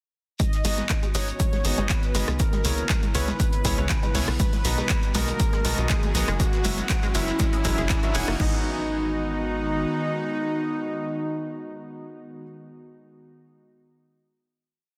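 Progressive house with a driving, expansive mood, built as a rising build from 0.4 s that resolves onto a held final chord at 8.4 s. A thick, bold sawtooth unison lead plays a repeating riff with dub echo, doubled in the background by a smooth supersaw. Beneath them sit an airy, breathy chorused pad, brilliant off-beat grand piano chords, a tight detuned synth arpeggio looping three steps against the bar under a filter sweep, and a punchy off-beat sequencer bass, with sidechain pumping on the supersaw, pad, arpeggio, piano and bass. An up-front house kit supplies a four-on-the-floor kick and crash, while a second house kit adds hats, claps and rim clicks. These are layered with a very quiet dry, dark breakbeat kit, grainy shekere sixteenths and a faint riser from 3.5 s, in a dense, heavily limited master with light small-room reverb.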